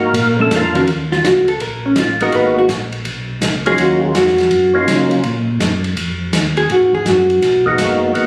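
A dark, clean hollow-body jazz guitar sits up front, entering at 0.4 s and taking a compressed, picked solo from 0.9 s in this smoky, soulful soul jazz organ trio fragment, which swings at 165 BPM in Eb minor over Ebm7 and Abm7 changes. A fat, lightly overdriven tonewheel organ with percussive third-harmonic attack, slow rotary speaker and plate reverb carries the melody until 5.2 s, returning briefly at 7.7 s, while a mellow, round second organ voice with chorus vibrato and key click plays the bass line. A smooth acoustic jazz kit with a boomy kick, medium-tuned snare and dark cymbals completes the trio, captured on a phone in a moderately reverberant room.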